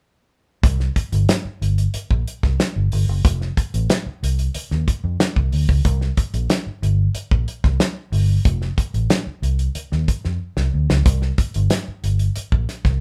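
A funky, cool bass-and-drums groove opens at 0.6 seconds, with a dark, round, foam-muted vintage electric bass sitting low and punchy up front beside a dry, damped 70s kit of hi-hat, tight kick and fat snare, the pair playing live together in a moderate studio room in this short cut from a longer piece, until a drum fill at 10.4 seconds leads toward the close at 13.0 seconds.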